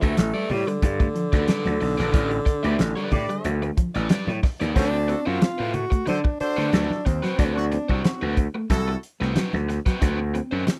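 Lightly reverberant and gritty, this funky 91 BPM cut from a longer piece sets an up-front, breathy, close-miked tenor saxophone melody over a punchy, growly overdriven slap bass, a dry soul drum kit with a fat snare and tight kick, a biting overdriven guitar, a dark, slightly broken-up guitar riff in the background and very quiet damped congas, while a warm, tight horn section with vibrato enters at 2.6 seconds, the band hits an accent from 2.1 seconds, and the A9sus4 chord gives way to D13 at 4.8 seconds.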